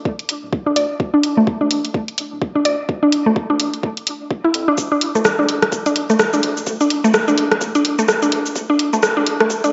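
A soft, tape-warm electronic kick opens this quirky, sparse minimal techno piece at 0.1 s, with a layered garage kit of bright hi-hats, cabasa and rim clicks joining almost at once and both sitting up front in a studio reverb. The groove runs at 127 BPM in 4/4 with a noticeable 16th-note swing, set in D minor. From 0.7 s a woody, round FM pluck with a mallet-like attack and short decay carries the riff, its bright tone coloured by chorus, phaser, sidechain pumping and a diffuse ambient delay. Beneath it, a deep, thick sine sub bass with a saturated edge holds long notes very quietly in the low register. The whole clip is a build-up, with a filter sweep on the synth arpeggio running throughout. A wet plate reverb gives the mix a dreamy, soaked feel, its highs rolled off, and this is cut from a longer piece.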